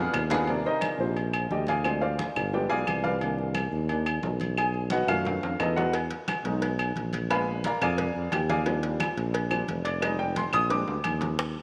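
A short drum fill opens this sunny, danceable slice of Afro-Cuban jazz in Eb major, with the baby grand piano and tuba sounding from the first moment at a brisk 176 BPM in a straight 4/4. The piano, warm, intimate and up front, with audible action noise and short sustain, takes a solo over rich changes such as Ebmaj13, G7b9, B7 and Emaj7. Beneath it, a close-miked tuba carries the bass with a mellow, soft-attacked tone, light vibrato and scooped notes in a jazz style. Woody, saturated claves and bright, damped congas played with hard hands sit in the background, while ringing metal-shell timbales and agogo bells add a vintage, band-limited shimmer. Tight, high-tuned cowbell and bongos sound dry and close in a brief burst at the start and return at 5.9 s after a second fill. A wet plate reverb gives the mix its space, and the passage is cut from a longer piece.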